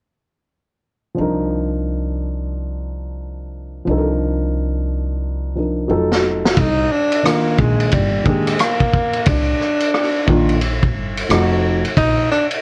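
A dark, intimate grand piano with audible action noise opens at 1.1 s on Cm11 and F7b9 chords, joined by a woody, thumpy pizzicato upright bass, before a vintage drum kit with a punchy kick, high-tuned snare and rolled-off top enters at 6.1 s, and a mellow subtone tenor saxophone with vibrato and scooped notes takes the solo melody at 6.5 s, all in a cool, smoky jazz-hop cut from a longer piece at 89 BPM in C minor with a swung 16th feel, light reverb and the warble of worn cassette tape.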